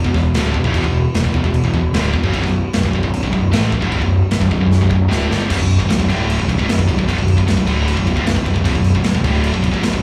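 A scooped, high-gain guitar, double-tracked and bright, drives an epic, heavy metal riff in B minor at 152 BPM, backed by a punchy fuzz-overdriven picked bass and a big acoustic drum kit with boomy kick and bright cymbals, all up front in a small live room, with a drum fill at 4.7 seconds launching a new section at 5.5 seconds in this fragment of a longer piece.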